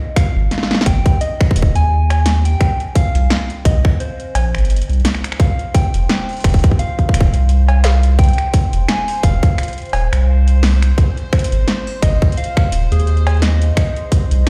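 A gentle, round FM synth lead with a warbling chorus and digital delay opens this intricate, glitchy IDM excerpt in F minor at 86 BPM, soon joined by a tight, overdriven electronic kick that sits up front alongside a drum machine of punchy snare, metallic hats, cowbell and finger snaps, all with a light swing. A deep, nasal analog bass anchors the low end, and from 5.7 seconds a resonant sawtooth texture bubbles through random filter steps in the background, pumping with sidechain and washed in its own reverb. The dry mix carries a roomy edge, with the kick re-recorded in a large space.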